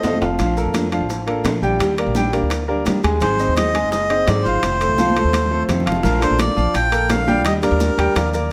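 A straight 4/4 Cuban son and guajira groove at 170 BPM in Bb major sets a sunny, danceable mood, as a woody, thumpy pizzicato upright bass and a bright, fingerpicked nylon-string guitar with finger squeak play from the start alongside brilliant grand piano arpeggios, high-tuned congas, round low-tuned bongos, ringing metal-shell timbales and grainy maracas, while a reedy, breathy melodica carries the melody up front from 3.2 seconds in a large studio reverb, with drum fills at the start and between 5.0 and 6.0 seconds in this piece cut from a longer one.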